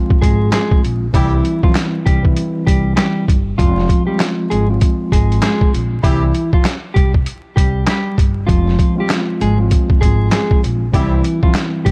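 A swung 16th-note groove at 98 BPM in 4/4 drives this reflective, moody boom-bap hip-hop piece in F harmonic minor, cut from a longer track and moving between Fm and C. The gritty, pitched-down sampler-style kit sits up front, with a thumpy kick, a medium-tuned snare, hi-hat and handclaps. Barely audible human finger snaps add a touch of live-room texture. A pizzicato upright bass with a woody tone holds down the low end, while a mellow tine electric piano, heard through its built-in speakers and given a cassette-tape colour, plays the accompaniment. A dark, clean, fingered electric guitar carries the melody with a slapback echo. A jazz-style horn section with light vibrato and octave doubling punctuates the harmony with tight, warm stabs at 1.1, 6.0 and 10.9 seconds. The overall production is dark and warm, with vinyl crackle and lossy compression artefacts.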